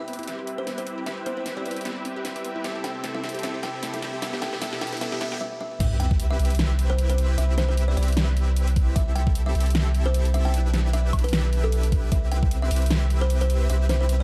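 Future bass at 152 BPM in C major with a half-time, swung feel, this playful, bright excerpt builds from a buzzing, woody kalimba melody over a breathy pad, a punchy detuned unison pluck, and filter-swept supersaw chords with a drum fill and faint riser, then breaks at 5.4 seconds before dropping at 5.8 seconds into a deep, thick sub bass and knocking overdriven kick beneath the huge lush supersaws, the kalimba, and a dubstep kit with a huge snare and bright hats, the synths, kalimba and sub bass pumping in a digital ambience.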